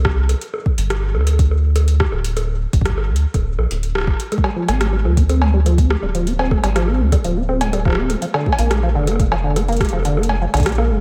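IDM with an eerie, intricate mood in a straight 4/4, this short excerpt opens on a rubbery, nasal square bass with a hollow, resonant filter pluck and a moving notch, sitting dark and up front beside a deep, tape-warm electronic kick. An overdriven analog drum machine sprinkles bongos, cowbell, metallic hi-hats and rim clicks through tape echo, sounding re-recorded in a large room. At 4.3 s a deep sawtooth acid bass enters with resonant filter-swept arpeggios through analog delay, as the harmony moves from G5 to Fm and then Bb7 under light reverb.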